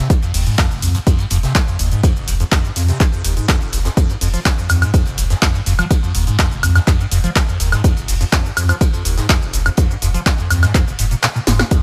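The liquid acid bass opens the passage, a squelchy, resonant square-wave riff in F minor with a filter sweep, fast attack and decaying notes, coloured by phaser, lush chorus and digital delay and sitting up front. At 124 BPM in straight 4/4, this gritty, raw slice of acid house settles on a single Fm chord. An overdriven electronic kick, dry and punchy, leads the drums alongside a punchy analog drum machine whose snare, handclaps, hi-hat, cabasa and woodblock are also overdriven and up front. A deep, round sine sub bass enters at 0.3 seconds, sustained and mellow, with sidechain pumping. Further back, a crisp acoustic fusion kit adds bright, pumping cymbals and hats and a high-tuned snare in a small room, while the kick drops out at 11.2 seconds ahead of a drum fill at 11.5 seconds in this cut from a longer piece.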